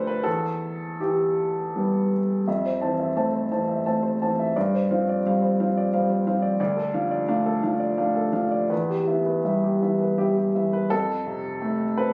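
A clear upright piano plays alone from the first moment, in an intimate, reflective piece of neoclassical minimalist piano that sits in 3/4 at a rubato pace of roughly 79 to 89 BPM. Its tone is woody and natural, with audible action noise and a long sustain, and it sits up front, reaching from D2 to A5. The harmony moves from Em through Fmaj7, G7sus4 and Dm, returns to Em at 8.7 seconds, and touches F at 10.9 seconds just as the short fragment, cut from a longer piece, comes to a close. Captured on a phone in the room, the sound carries a light reverb and compression that keep the intimate, close-up quality in focus.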